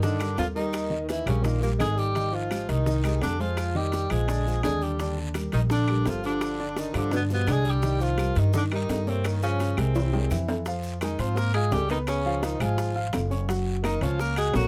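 Fiery yet sultry, this Afro-Cuban jazz excerpt moves at a brisk 169 BPM in straight 4/4, rooted in C minor before shifting to F minor at 10.7 seconds. Two tenor saxophones carry the front line: a clear, distant-sounding horn with scooped notes and a soft attack sings the melody, while a second tenor with a warm subtone and vibrato adds a lower line beneath it. A grand piano with audible action noise fills in the harmony intimately, and the pizzicato upright bass sits up front with a woody, steel-string tone. The percussion bed blends tight, high-tuned bongos played with soft hands, ringing metal-shell timbales, woody claves, a raspy guiro and grainy, mellow maracas, most of them set in the background. A drum fill from 9.8 to 10.7 seconds ushers in the new section, and the recording uses close, detailed microphones with little reverb.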